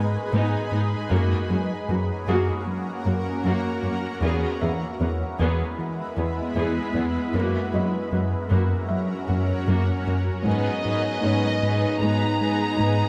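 Bathed in the wet reverb of a scoring stage, this vast, tense cinematic excerpt in G# minor at 77 BPM builds over a smooth, wave-folded synth bass riff, a shimmering, ethereal ambient pad with chorus and phaser, a lush bowed cello section, a background viola section and a felt-muted upright piano with audible action noise and tape echo, until at 10.5 seconds two distant violin lines, one carrying the melody and one a second line, arrive with a mellow French horn section holding sustained chords as the harmony returns to G# minor.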